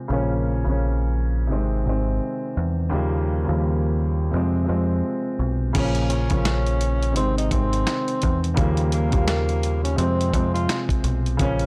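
A swung boom-bap rhythm anchors this dark, gritty hip-hop excerpt, where a mellow grand piano tinted by cassette tape and a round, deep picked electric bass lay out a four-chord progression before a compressed, dusty sampler-style drum kit with a thumpy kick and crash cymbal enters at 5.7 seconds, and a breathy, whispered tenor saxophone solo with vibrato and scooped notes drifts in from 6.1 to 10.9 seconds, the whole dry hardware recording framed by digital ambience.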